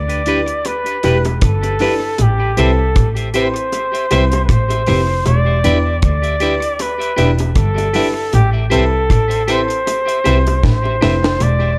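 Up front, a warm, punchy flugelhorn with vibrato carries the melody through this short, longing lovers rock reggae excerpt in A minor, its vintage tone trailed by tape echo. Beneath it sits a clear, focused double bass, bowed by one player with its own vibrato and sitting close and prominent in the mix, while a deep, dry reggae drum kit with a tight kick, high-tuned snare, rim clicks and hi-hat moves at an unhurried 78 BPM in 4/4 with a lilting sixteenth-note swing. A lush, dreamy FM electric piano layered with a soft pad adds mellow, chorused chords, and a clean, picked electric guitar contributes stabs touched with tape echo. Tight, high-tuned bongos played with soft hands sit in the background from 0.7 seconds. The harmony sways between Em7 and Am7, giving a bittersweet pull, and a drum fill at 10.6 seconds closes the passage, all set in a light studio reverb.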